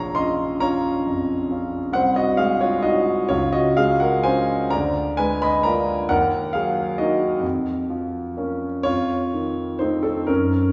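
Classical romantic nocturne for solo concert grand piano, a mournful, yearning fragment cut from a longer piece, unfolding in 12/8 with free rubato. The piano sits up front with an intimate, natural tone, deep bass, long sustain and audible action noise, spanning Bb1 to Db6 and wrapped in a wet concert-hall reverb. Its harmony drifts through a chain of minor, major and dominant chords, coming to rest on F7 at 8.8 seconds before the passage breaks off at 10.7 seconds.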